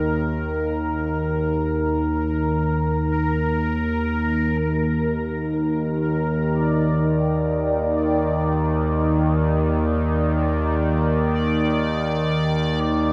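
An up-front analog drone, detuned and wave-folded with evolving pulse-width modulation and chorus, sustains low and dark beneath a bubbling, resonant texture of random filter steps drenched in shimmer reverb, the pair floating in a huge, wet room in this unsettling free-time dark ambient drone cut from a longer piece.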